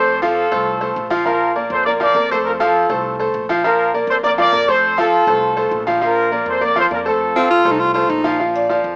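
A mellow trumpet section carries the melody up front in this festive, danceable Latin excerpt, its tight, punchy voicing touched with light vibrato and a smooth top, colored by analog delay and a cassette tape grain. Set at a brisk 202 BPM in 4/4 with a straight feel in Bb major, the passage alternates between F and Bb chords, reaching an F7 at 7.2 seconds before resolving to Bb. A bright baby grand piano accompanies throughout with a brilliant, polished presence and short sustain, while a pizzicato upright bass with steel strings sits low and thumpy in the mix. A clear baritone saxophone briefly adds a punchy second line from 7.4 seconds, and a Cuban tres takes over the melody at 8.6 seconds with its metallic, picked double strings. The whole excerpt has the modest small-room ambience and small-speaker character of a home cassette recording.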